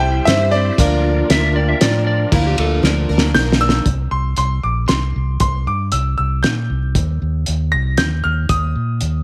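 A lightly reverberant mix opens this nostalgic, open-road slice of folk rock and heartland rock in a straight 3/4, cut from a longer piece. A brilliant grand piano with plate reverb carries the melody throughout, over an amped fingered electric bass and a muffled, cloth-damped drum kit with a fat snare and dark cymbals. Early on, a shimmering octave-doubled twelve-string acoustic guitar, a reedy, lightly overdriven electric piano with phaser, and a key-clicking tonewheel organ on fast rotary speaker fill out the sound, with the organ dropping away at 2.3 seconds, while an electric slide guitar adds a slightly broken-up second line from 1.3 seconds, and a drum fill at 2.8 seconds leads into a final stretch where piano, bass and drums play on alone.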